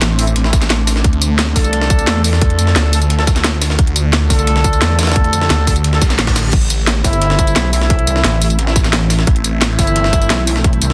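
Dark technical drum and bass at 175 BPM in A minor, aggressive and tense, where an overdriven drum kit with cracking snare and tight electronic kick sits up front over a gritty, pitched-up jungle break in the background, a swirling phased saw bass hands over at 7.0 seconds to a pulsing, chorused wobble bass, distant dark brass stabs with delay sound alongside a swarming granular drone, and a reverse cymbal enters at 6.0 seconds into a dense, heavily limited mix.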